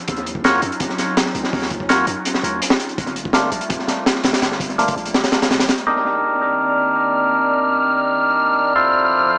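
Drum and bass with a jungle edge, this frenetic, raw fragment runs at 166 BPM in C dorian. A warbling, detuned tape-like pad holds lo-fi chords throughout, while a percussive, lightly overdriven tonewheel organ sits up front, stabbing through dub echo. A crunchy, saturated breakbeat kit with a punchy kick and high-tuned snare drives the opening over a deep, sine-based 808-style bass in the background; the kick briefly drops out, the bass ends at 5.7 seconds and the kit stops at 5.9, and from 6.3 seconds an airy, breathy wind-like noise texture drifts in over pad and organ, the whole mix steeped in wet spring reverb, echo-heavy and carrying a small-speaker sound.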